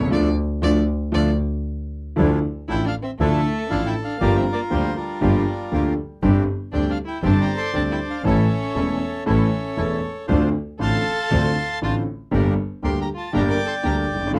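A dry, close 1970s-style studio sound with light reverb frames this dramatic, passionate tango excerpt in D minor at 118 BPM, played rubato in 4/4. A warm, expressive bowed violin with vibrato and portamento opens with a solo over a band accent, then carries a distant second line. Meanwhile a clear, smooth, vintage concert grand piano with deep bass and an earthy bowed double bass with light vibrato sit up front, and a boxy bandoneon adds stabs; from 2.7 seconds a bright, reedy bandoneon melody enters in the background over chords moving from Dm through Gm7 and A to Gm.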